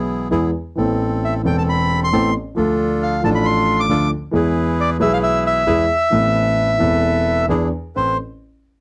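A rubato 4/4 pulse at 134 BPM carries this melancholic, dramatic tango in A minor, cut from a longer piece. A mellow, deep-bassed grand piano with a short, vintage sustain plays the accompaniment up front, and a shadowy, reedy bandoneon adds quieter stabs. From 1.2 s a second, warm bandoneon sings the melody over E, Amadd9 and Dm harmonies, all in a dry, close 1970s-style studio sound.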